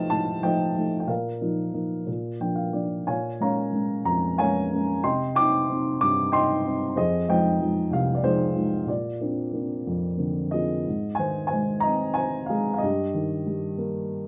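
This calm, peaceful classical piece for solo upright piano moves with a gentle rubato at 62 BPM in 6/8, drifting through rich harmonies such as Bbsus4, Bbm7, Cmadd9 and Fm7. The piano sounds mellow, woody and slightly boxy, sitting up front in a moderate studio reverb, with a dark production spanning low bass to high treble. A brief fill arrives between 2.1 and 3.1 seconds, and a new passage begins at 10.9 seconds, settling on Ab and Eb/G before this excerpt of a longer work ends.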